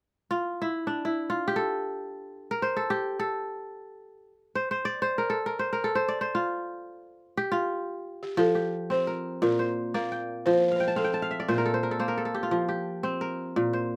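Flowing in free time, this hypnotic West African traditional piece in F major opens with a fingerpicked kora playing ringing, crisp arpeggios up front. At 8.2 seconds a woody, buzzing balafon played with soft rubber mallets adds a short melody over chords moving between F and Bb, while the kora slips in a fill before the balafon drops out at 12.1 seconds. Light reverb surrounds the pair in this clip cut from a longer piece.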